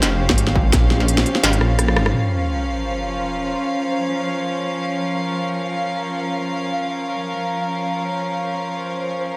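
Cinematic and heavy, this half-time drum and bass fragment in free time sits in Bb dorian on a Bbm chord, opening on a drop where dark, sul tasto strings with light vibrato hold sustained chords under sidechain pumping, a deep, rumbling detuned saw bass beats up front, and an industrial kit of clanging snare, rim click and crisp hats drives forward with a distorted electronic kick in the background. A drum fill arrives at 1.6 s, the kick drops out at 1.8 s, and at 2.1 s a band accent and impact give way to an electronic sub drop as the bass and kit stop. The strings sustain through 9.4 s while a faint, chorused triangle texture keeps pulsing, tempo-synced and in unison, all bathed in a lush hall reverb.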